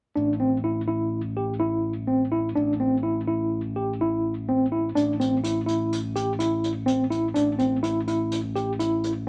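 Light reverb gives this short clip from a longer progressive instrumental a close, intimate sound, with a worn electric piano placed up front. The mood is driving and intricate, set in an uneven 5/4 meter with a straight feel, all over a single A minor chord. The mellow tine electric piano plays arpeggios in a middle register, sounding slightly out of tune and clean through a combo amp, shimmering with a fast tremolo. Beneath it, a bright, direct fingered electric bass holds a low A from the start. At 5.0 seconds a brushed hi-hat enters softly in the background, its natural small-room tone rolled off at the top, and it plays until 9.1 seconds.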